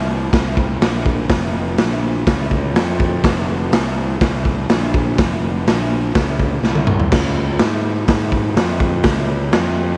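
A raw garage drum kit sits up front with a punchy kick, a medium-tuned snare, toms, hi-hat and crash cymbal, its saturated, rolled-off sound roughened by vintage 12-bit sampler grit in a bright stone room, and a fill arrives at 6.6 seconds. Alongside it, a fuzz fingered electric bass, also up front, growls through overdrive in the low register, direct and amped, driving this menacing, gritty garage rock cut in F minor at 124 BPM with a straight 4/4 feel. Light reverb frames the short excerpt from a longer piece.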